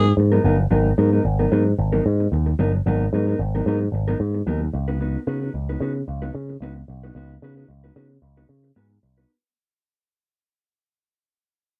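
A punchy picked electric bass with an envelope filter anchors this glamorous, danceable disco fragment, its bright, direct, amped tone sitting up front from the start until 9.2 s. Beside it, a mellow electric guitar carries the accompaniment in a dark, clean, fingered voice, compressed and also placed close. The harmony moves from G#m9 to C#9sus4 at 4.7 s over a straight 4/4 feel, with the whole performance tuned slightly below standard pitch. Cut from a longer piece, the passage begins fading out at 0.7 s and continues to dim through its end at 9.3 s. The dry, intimate sound of a home cassette recording gives the groove a raw, unpolished character.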